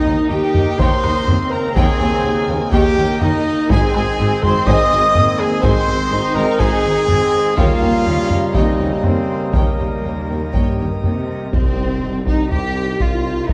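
A straight 4/4 pulse at 123 BPM drives this brooding, epic orchestral film cue, cut from a longer piece, with compressed, saturated taiko drums played with heavy sticks from 0.5 seconds over cellos, very quiet double basses and tuba in the bass. Lush bowed violins carry the melody and a second line alongside a pure, hollow flute, while rich violas accompany and a distant horn section, trombones and a full principal-chorus pipe organ hold sustained chords beneath a clear trumpet's stabs. The harmony moves from Eb7 to Ab and back before a huge, bright impact arrives on Cm at 11.5 seconds, the whole cue sitting in a dark, wet scoring-stage reverb.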